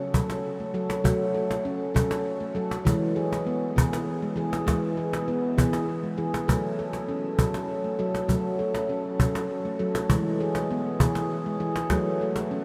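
Set in a gently swaying 6/8 at 66 BPM, counted in dotted quarters with a straight feel, this short excerpt from a longer piece is meditative world music in F# minor, tuned slightly high at A4 = 441 Hz. A stainless steel handpan, played with the fingertips and sitting up front, spins ringing arpeggios between E3 and A4 from the first moment, its tone trailed by diffuse ambient delay and a shimmer reverb. A cajon joins at 0.1 seconds, also close in the mix, giving a woody, acoustic pulse with faint snares under soft hands and a small-room character. The harmony rocks calmly between F#m and E, moving to E at 2.9 seconds, back to F#m at 6.5, to E again at 10.1, and returning home at 11.9 seconds. The whole mix is dreamy and soaked in a huge ambient reverb with an 8.5-second decay, leaving the gentle, meditative mood hanging in the air.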